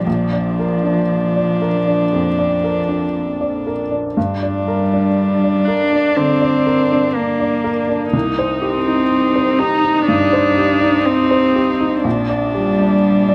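Moving in a slow, rubato 4/4 at about 61 BPM, this short neoclassical passage for piano and strings in G minor feels reflective and fragile, and it is cut from a longer piece. A warm cello carries the second line, played by one player with light vibrato, a soft attack and an airy bow drawn sul tasto, sitting close and intimate between F3 and Eb4. A clear upright piano supplies the accompaniment across a broad range from Bb1 to D5, its woody, slightly detuned tone ringing with long sustain and audible action noise. A dark viola joins at 0.1 seconds, also bowed sul tasto by a single player, holding a narrow span from D4 to Eb4 with a smooth top and gentle vibrato. The harmony moves from Bb through Gm and Cm before settling on Gm/Bb at 12.0 seconds, all three instruments placed up front in a light reverb.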